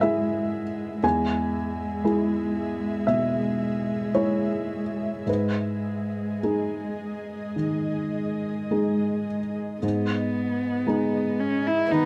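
Reflective and fragile, this slow, rubato neoclassical piece for piano and strings sets a felt-muted upright piano, intimate and boxy with its action noise audible, up front beside a dark, woody cello bowed sul tasto with vibrato as a second line. An ethereal, airy pad holds sustained chords quietly behind them, carrying ensemble chorus, tremolo and its own built-in reverb, while the close, detailed recording otherwise keeps the room dry as the harmony moves from C#m to E and then G#m. A soft, sul tasto viola slips in on a single note at 11.9 s, just as this fragment of a longer piece cuts off.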